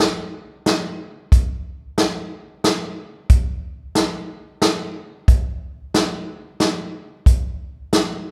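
A vintage acoustic drum kit of hi-hat, punchy kick and medium-tuned snare plays a lonesome, heartbroken country groove in 3/4, sitting up front with a warm, rolled-off top inside a moderate hall reverb that lends the short excerpt the spacious air of a church or concert hall.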